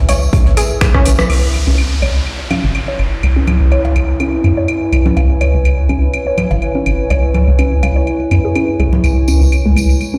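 Minimal techno at 124 BPM in C# minor, sparse and quirky, with a light swing on the sixteenths, cut from a longer piece and resting on a C#m7 chord. A rubbery, hollow square-wave bass sits up front and pumps against the sidechain, while a warbly, nostalgic tape-like pad with chorus and its own reverb drifts beneath it. A squelchy, resonant blip pluck carries the riff, roughened by 12-bit sampler grit and trailed by tape echo. The opening stretch is busiest: a punchy, layered electronic kick, a booming analog drum machine with metallic hats re-recorded in a large room, a dry, damped 70s kit in the background and a jingly tambourine all gather into a drum fill from 0.8 s and a band accent at 1.2 s, then drop away. From 1.3 s a downlifter sweeps through as overdriven cowbell, claves and congas with tape echo keep the groove moving over bass, pad and pluck, and the tambourine returns at 9.0 s. 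The mix sounds as if played on a big sound system in a bare room, with a moderate plate reverb and a large studio space around it.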